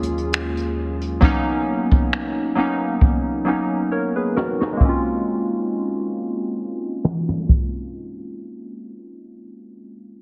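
Moody and sensual, this contemporary R&B fragment pairs round, detuned analog keys with chorus and a jazz brush kit of finger snaps, hi-hat, ride, toms, a high-tuned snare, dark cymbals and a boomy kick, in a gently swung 4/4. A filter sweep moves through the keys over the opening Ebm11 and Bmaj9 chords, and the brushes play a fill from 3.0 seconds ahead of the shift to Bbm9. The drums stop at 7.7 seconds and the keys carry on alone to 10.2 seconds, with the mix dry, muffled and squeezed into a heavily compressed radio sound.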